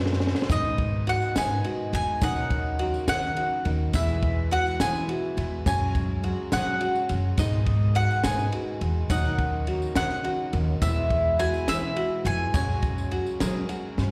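This indie folk piece opens with a short drum fill on a compact cocktail kit, whose punchy kick, high-tuned snare and ride cymbal sound dark and smooth with a rolled-off top. Picked steel-string acoustic guitar, grand piano, a mellow brass ensemble, open-back banjo and upright bass play from the very start, with a jingly tambourine joining in the background. At 0.5 seconds, the mandolin takes the melody up front, its double strings woody and picked, carried by a slapback echo. The tempo is a slow 70 BPM in a straight 6/8, and the piece moves through G#m, D#m7, E and F#sus2 in G# minor, giving it a bittersweet yet stirring mood as the arrangement builds. Underneath, the pizzicato upright bass is growly, thumpy and prominent. The twangy, plunky banjo arpeggios, the bright dreadnought guitar and the boxy, intimate piano with its audible action noise share the slapback echo, while the soft-attack brass section sits very quietly beneath them. 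The sound is that of a live gig heard through the venue's PA in a recital hall, and this passage is cut from a longer performance.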